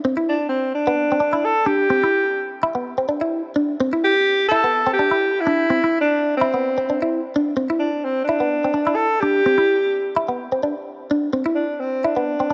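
An alto saxophone with a soft subtone and light vibrato carries a carefree, sunny jazz-style solo from 0.3 seconds, its roomy tone touched by slapback echo, over a bright, twangy, clean electric guitar that picks a compressed, phaser-tinged accompaniment in this brisk 128 BPM highlife passage in C major, cut from a longer piece and bathed in a moderate plate reverb.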